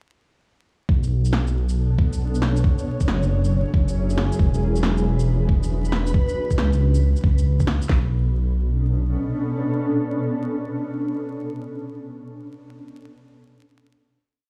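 Future garage at 137 BPM in B dorian, this short, complete piece has a nocturnal, rainy mood, its 4/4 groove swung on the sixteenths. A garage drum kit sits up front with a knocking, muffled two-step kick and a cracking snare, layered with a quieter electronic shaker and second snare that skitter in a shuffled beat through the groove from 0.9 to 7.9 seconds. Underneath, a dark detuned saw bass rumbles and beats with long gliding notes, its tube saturation giving it a gritty edge. A cloudy, granular pad blurs through slowly shifting chords, moving from Bm9 to F#9 and E9, falling away to a break at 6.1 seconds, then settling on a final Bm9 that it holds until 12.2 seconds, alone once the bass drops out, pumping against the sidechain in its own reverb. Midway, a faint reversed texture swells up on a bright, dreamy held high note. The mix feels dry and close, with a tape-warm tone on the drums and a vinyl crackle.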